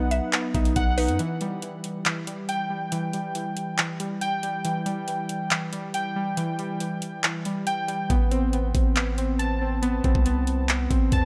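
A dry, close-sounding mix opens this dark, brooding half-time trap piece, where a woody, round mallet-like synth pluck with chorus, phaser and delay and a mellow tine electric piano sit in the background for the first 1.2 seconds before falling away. Warbling, nostalgic lo-fi synth keys, detuned and filtered with chorus and delay, carry arpeggios up front throughout, over a trap kit of knocking kick, metallic hi-hats and handclaps. A deep, sine-toned 808-style bass sustains under the opening, drops out for a break, and returns at 8.1 seconds under an Amadd9 chord.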